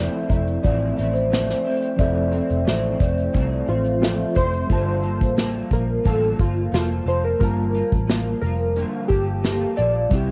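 A woody, ringing kalimba opens this hazy, sunny bedroom-pop fragment at 89 BPM alongside a slightly broken-up picked electric guitar with analog chorus and vibrato, a reedy electric piano with fast tremolo in the background, and a dark, foam-muted electric bass up front, with an airy unplugged drum kit played with bundle sticks arriving at 0.3 seconds. At 3.7 seconds, mellow, detuned sawtooth keys with a filter sweep and ensemble chorus take the melody, and the kalimba stops at 4.5 seconds. The harmony moves from Fmaj7 to Gm9 at 4.7 seconds, while cassette tape texture on most parts, 12-bit sampler grit on the drums, and spring and small-room reverb give it a homespun glow.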